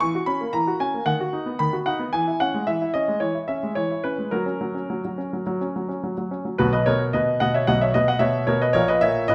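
A clear, up-front grand piano plays this playful, elegant classical-period sonatina excerpt alone in B major, moving with a rubato feel around 104-114 BPM through chords from F#7/E to a closing A#madd11, ranging from A#1 to C#6 within a moderate recital hall reverb, shifting into a new section at 6.6 seconds before the cut at 9.3 seconds.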